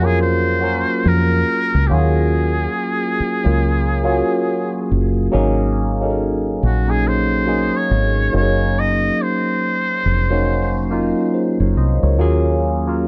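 A buzzy, breathy trumpet with a metal mute carries the melody with vibrato and a soft, whispered attack, dropping out at 10.9 s. This is an introspective, soulful neo-soul and R&B fragment at 70 BPM in Eb dorian, with a swung sixteenth feel. A barky tine electric piano, lightly overdriven through a combo amp and colored by phaser, supports the trumpet over Ebm11, Ab7sus4 and Gb69 chords, while a round, foam-muted fingered electric bass sits dark and up front in a dry, close 1970s-style studio sound.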